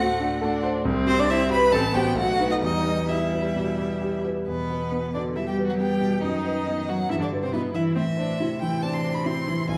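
A rubato 4/4 pulse at 138 BPM drives this spirited, cheerful excerpt from a quick classical-period piano quartet movement in E minor, where a clear, smooth violin carries the melody up front with vibrato, a distant, even-toned cello sings a second line, a rich viola accompanies with soft attacks, portamento and expressive vibrato, and a vintage-sounding grand piano with short sustain supports harmonies that move from D7 through B7 to Em and later Am, the whole performance set in a church or concert hall with 1.5 seconds of reverb.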